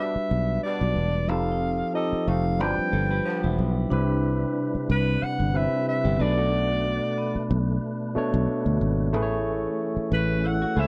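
This soul excerpt moves at 92 BPM in 4/4 with a light sixteenth-note swing, and its mood is lush and warm. A breathy, whispered alto saxophone carries the melody up front in an intimate jazz style, with a soft attack and light vibrato, though it also has a distant, roomy quality. Beneath it, a barky tine electric piano, lightly overdriven through a combo amp, plays bright accompaniment, and a growly, foam-muted fingered bass sits direct and amped at the front of the mix. A horn section adds pop-style stabs with gentle vibrato until 3.7 seconds, and a vibraphone played with medium hard mallets rings in the background with a metallic, vintage, slow motor vibrato. A dark, slightly broken-up picked guitar riff enters at 2.9 seconds, and at 3.9 seconds a fat, percussive tonewheel organ joins with sustained chords, key click, chorus vibrato and a slow rotary speaker, as the chords shift from Gmaj7 through Cmaj7 and Bm9 to Amaj7. 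The sound is dry and close, in the manner of a 1970s studio recording.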